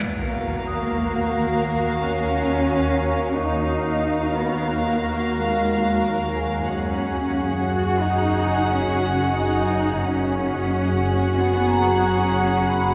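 In a straight 5/4 pulse at 90 BPM, this ominous, uneasy passage of suspense film score in Eb minor moves from Ebmadd9 to Gbsus2 at 6.7 seconds, cut from a longer piece. Sul tasto string sections carry it throughout: violins take the melody and a second line with light vibrato, a warm viola section holds Gb4 as accompaniment, and dark, woody cellos join double basses on the bass. Deeper in the background a swarming, detuned granular drone warbles through built-in reverb and a phaser, a ringing vibraphone with hard mallets adds metallic, bright texture, and an electronic reverse cymbal and impact sound until 3.4 seconds, all set far back in a cathedral-like reverb.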